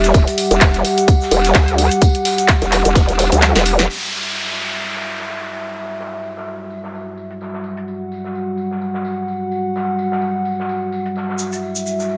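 A moderate plate reverb and small-room ambience frame this short, aggressive bass house clip, cut from a longer track with a bouncy swing on the sixteenths. A tight, up-front electronic kick drives the opening beside a punchy house kit of handclaps, snare and bright filtered hi-hats, joined by a grainy egg shaker, while a gritty, low-tuned acoustic kit with a fat snare and tambourine sits in the background. The vowel-sweep wobble bass is the centrepiece, nasal, resonant and saturated, with chorus and sidechain pumping. Alongside it, a deep, moody analog pad of detuned square and sawtooth tones holds sustained chords with a slow attack and its own sidechain pumping. The kick drops out at 3.4 seconds for a drum fill, and at 3.9 seconds the bass and house kit stop as a downlifter enters and a filter sweep moves over the pad. The low-tuned kit carries on under the pad, and the shaker returns at 11.4 seconds.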